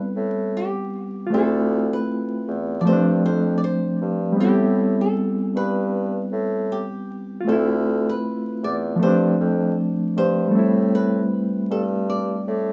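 Nostalgic and hazy, this lo-fi hip hop excerpt drifts over a loose, swung groove, circling through Am9, Dm9 and G9sus4. A reedy, barky electric piano sits up front with light overdrive, fast tremolo and a cassette-tape tint, while a warm, distant bassoon with light vibrato and a soft attack carries the low line in a classical style. A fingerpicked flamenco guitar plays the melody more quietly through an analog delay, all set in a small room with light reverb, vinyl crackle and a rough home-demo feel.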